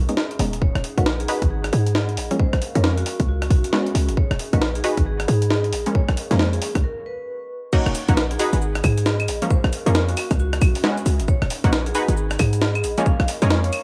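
A skippy two-step garage groove at 135 BPM in 4/4, swung at 62% on the sixteenths, drives this moody excerpt in Eb minor, cut from a longer piece. A tight, layered electronic kick, re-recorded in a large room, sits under a gritty, compressed, pitched-up breakbeat kit of high-tuned snare, rim click, hi-hat, shaker, claves and crash cymbal, while a short, punchy 808-style sine bass with a noise layer and fast attack sits up front. Detuned sawtooth chord stabs with a wave-folded filter pluck, chorus and tape grit cycle bright minor-seventh changes through Ebm7, Abm7 and Bbm7. Behind them a warbling, nostalgic square-and-triangle pad breathes with sidechain pumping, slow attack and long release, and a metallic, ringing vibraphone with medium hard mallets and motor vibrato carries the melody from 0.6 seconds. A brief break lands at 6.8 seconds on a Db5 chord before the drop at 7.7 seconds, all captured with a lo-fi cassette home-recording character and light digital ambience.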